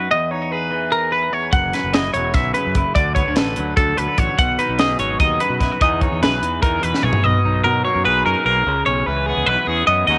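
A playful, wistful slice of math rock and midwest emo, cut from a longer piece, moving at 294 BPM counted in eighths through a straight 7/8 in E lydian. A bright, twangy twelve-string electric guitar sits up front with compressed, picked arpeggios high in its range, colored by cassette tape and analog delay, while a clean electric guitar with a scooped tone plays accompaniment beneath it from the start. At 1.5 seconds a fuzz-laden fingered bass enters with overdriven punch, joined by a crisp fusion drum kit whose high-tuned snare, punchy kick, hi-hat and toms sound airy and polished. The harmony drifts through chords like Emaj7#11, F#7sus4, Dmaj7 and B6 before returning to Emaj7#11, and a drum fill at 6.9 seconds leads into a new section where the drums drop out at 7.2 seconds. The guitars and bass carry on over Bmaj7 and C#m7, all set in a small-room ambience with the character of a home cassette recording.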